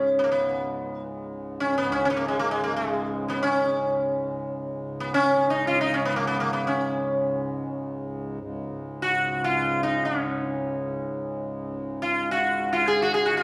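Hindustani classical music in free time, meditative and radiant, drawn from a longer performance of raga khamaj. A buzzing, plectrum-plucked sitar carries the melody up front, its sympathetic strings shimmering around a round tone, while a reedy, breathing hand-pumped harmonium holds a dark, nasal drone much lower in the mix. The sound is heard from further back in a recital hall whose lush reverb lingers for about 1.6 seconds.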